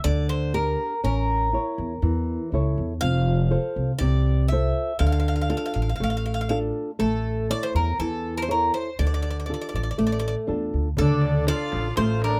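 Closely miked and detailed with light reverb, this intense, dramatic piece of Greek folk from a bouzouki band opens with a metallic, double-strung bouzouki picking the melody over a dark, boxy flamenco guitar, thumb-plucked with audible finger squeaks, and a woody pizzicato upright bass, both placed up front. The harmony moves through Gm, A, F and Dm in a straight 4/4. At 11.0 seconds a reedy, rich accordion adds a second line while a crisp, small metal-shelled darbuka, struck with hard hands, sounds distant in the background as if in a large room.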